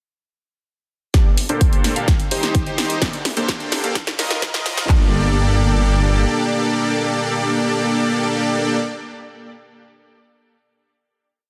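Festival progressive house with a powerful, euphoric lift, this short, complete piece opens at 1.1 seconds with a build-up in straight four, a drum fill and a filter sweep running across the supersaw until 4.9 seconds. A dense, compressed supersaw leads with dotted-rhythm chords in a drop-2 voicing, its huge, thick, airy tone carrying vintage 12-bit sampler grit, sidechain pumping and tape echo. Beneath it, a detuned saw bass sits mellow and lush with chorus, following the chord rhythm from G minor add-nine through C minor and E-flat sus-two, and it drops out at 6.3 seconds. The big-room kit drives a punchy four-on-the-floor kick with layered claps up front, while programmed closed and open hats and a snare backbeat sit lower in the mix, all in a small room ambience. The drums cut at about 4.9 seconds, and the supersaw and bass move to a final G minor add-nine chord, which the supersaw carries on its own after the bass drops out, ringing until 8.8 seconds over a dense, heavily limited master with light reverb.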